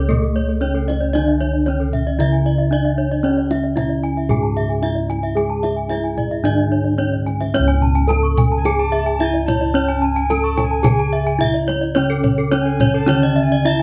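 A close, dry band sound in a live room with a short wet studio reverb frames this hypnotic, brilliant excerpt of Balinese gamelan in C# pelog at 111 BPM in 4/4, its beats uneven. A ringing bronze metallophone carries the melody with wooden-mallet strikes and the shimmer of paired tuning, while two bright, horn-mallet metallophones spin arpeggios above, one of them set back in the mix. Beneath them, dark, round bossed gongs hold the bass up front, and a tight kendang adds percussion. After a drum fill at 7.1 seconds, the background metallophone accompaniment drops out at 7.5 seconds and later returns, and an airy tenor recorder with a tongued, chiffy, straight tone enters at 8.6 seconds as a second line.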